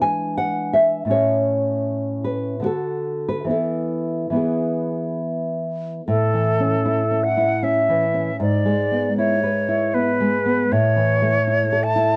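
A nylon-string classical guitar opens this serene, romantic duo alone, its thumb-plucked acoustic tone sitting up front as it sets out a gentle accompaniment in A major. The music moves in an unhurried 3/4 with a rubato feel, drifting between roughly 69 and 84 BPM as the harmony settles from E7 onto A and passes through Bm/D and E. At 6.1 s a silver concert flute enters with the melody, its pure, metallic voice carrying a soft attack and vibrato, placed close and touched by plate reverb. Beneath it the guitar continues through A, E7/G# and back to A, with both parts held near the front of a dark, warm production with light room reverb. The excerpt, cut from a longer piece, ends at 12.2 s.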